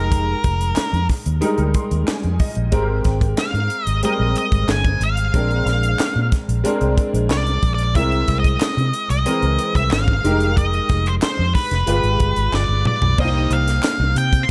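Polished 1980s jazz-funk pop in C minor at 92 BPM, slick and bittersweet, this excerpt sets an up-front octave-fuzz lead guitar with a dark, distorted bite singing the melody over a clear, intimate baby grand piano treated with ensemble chorus and plate reverb (its action noise audible, with a fill at 1.4 seconds), a round, foam-muted vintage fingered bass, a tight funk drum kit with bright cymbals, a high-tuned snare, gated reverb and a fill at 12.5 seconds, and hollow group handclaps sitting in the background, all moving through lush chords from Fm11 and Abmaj9 to C7alt and G7b9 before settling on Cm7 at 13.2 seconds.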